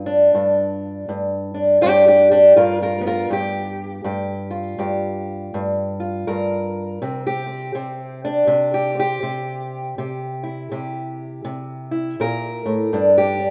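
A recording with light reverb carries a single old ladder-braced acoustic guitar, placed up front and fingerpicked with the dark, boxy, woody tone of aged strings. This rollicking, gritty stretch of acoustic country blues, lifted from a longer piece, swings its eighth notes in 4/4 as the solo guitar moves from G7 to C7 at 7.0 seconds and lands on a bare G5 near the close at 12.9 seconds.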